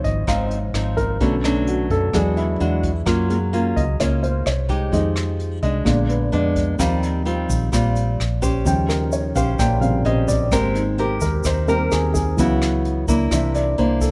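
A dark, intimate baby grand piano takes the lead in this relaxed, sophisticated bossa nova at 129 BPM, its mellow tone carrying audible action noise over up-front fingerpicked nylon-string guitar with finger squeak, a round, punchy foam-muted electric bass and a brushed drum kit with a boomy kick and rim clicks, while a grainy tube shaker joins in the background at 6.8 seconds, all captured close and dry through rich extended jazz chords.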